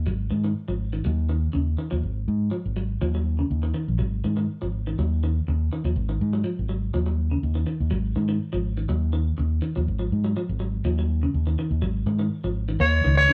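Hypnotic and driving, this afrobeat excerpt moves at 122 BPM in Eb minor. A clean, picked semi-hollow electric guitar spins arpeggios over a round, punchy fingered electric bass that sits up front, cycling mostly between Ebm7 and Ab5 chords in a moderately reverberant room where the band plays live. At 12.8 seconds a raspy, gritty alto saxophone breaks in on a single scooped Db5 with light vibrato, just as the fragment cuts off.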